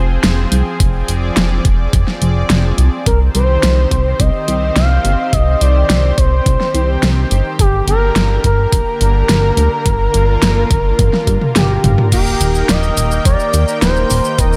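An expressive, mellow sawtooth lead glides in at 3.1 seconds with portamento and vibrato, its chorus and delay floating over a cinematic, nostalgic synthwave groove at 106 BPM in F dorian. Beneath it, a glossy, dark chorused synth bass with tube saturation sits up front beside an overdriven pop drum kit with a fat snare and gated reverb and a knocking electronic kick, while a lush, detuned unison pad pumps under the sidechain within a light digital ambience. After a drum fill, bold, brassy analog synth stabs with a cassette-tape tint arrive at 12.1 seconds as the harmony moves to Eb in this excerpt cut from a longer piece.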